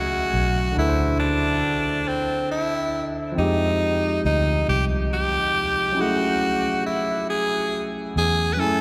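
A raspy, gritty tenor saxophone sings a yearning, sultry R&B melody up front from the first moment, over a barky, lightly overdriven tine electric piano through a combo amp and a dark, round, foam-muted fingered electric bass, moving in a slow 6/8 through chords like F#madd9, Dsus2 and Fm9, all bathed in the long, wet reverb of a cathedral-like hall in this short piece cut from a longer work.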